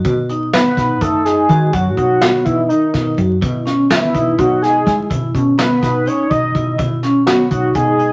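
Driving 7/8 at 249 BPM in eighths, this bright progressive instrumental fragment sets a soft brush drum kit and a woody, punchy fretless bass under ringing soft-mallet vibraphone arpeggios, with a bold, detuned octave-doubled lead carrying the melody through chorus from 0.5 seconds alongside a quieter, breathy trombone second line, while the harmony moves from B to E/B in a reverberant studio sound dusted with vinyl crackle.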